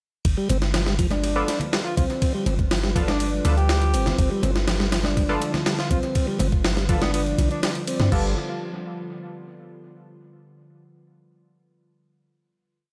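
A gritty, raw breakbeat groove at 122 BPM in straight 4/4 is driven by a compressed, pitched-up looped break with a thumpy kick and a high-tuned snare, topped by a very quiet, overdriven electronic hi-hat layer and joined by ringing, close, dry congas in the background. A deep, boomy 808-style bass plays a dub-style line up front, while a mellow tonewheel organ with key click and slow rotary speaker repeats a 16-step riff over a lo-fi, warbling pad centred on G7. Nasal, band-passed sawtooth chord stabs echo sparsely from 1.4 seconds, a clear alto saxophone adds short classical-style answering phrases from 1.9 seconds, and the piece settles on a final chord from 8.1 seconds in an echo-heavy mix.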